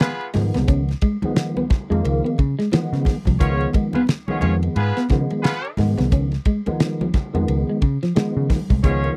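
A playful funk snippet opens with a damped 70s drum kit's fat snare and tight kick up front, a clear horn section playing a tight second line with octave doubling and light vibrato, a dark, clean electric guitar riff bathed in lush chorus, worn, slightly out-of-tune tine electric piano stabs through ensemble chorus, and ringing congas in the background, before a round, foam-muted picked electric bass joins at 0.4 seconds, all captured in a dry, close 1970s-style studio sound.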